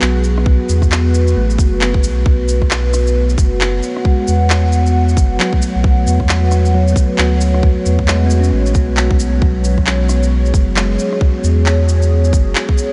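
A swung future garage groove in 4/4 drives this ghostly, nocturnal fragment of a longer piece, with a tight, up-front electronic kick entering at 0.5 seconds beneath layered handclaps, shaker and rim click, all given a tape-warm, produced character and a touch of studio reverb. A deep, round sine sub bass sits up front with a fast attack and long sustain, pumping through sidechain compression. Above it, a dark analog pad built from detuned square, sawtooth and triangle waves with a sub octave swells in slowly and holds moody chords, colored by chorus and phaser and breathing with the same sidechain pump. Set back in the background, a bell-like, clean tine electric piano plays accompaniment, its bright tone trailing into a diffuse ambient delay. The harmony moves from a minor add-nine chord to a seventh chord at 2.3 seconds and settles on a suspended chord at 9.4 seconds, all bathed in a huge, dreamy reverb with a softened top end that deepens the late-night haze.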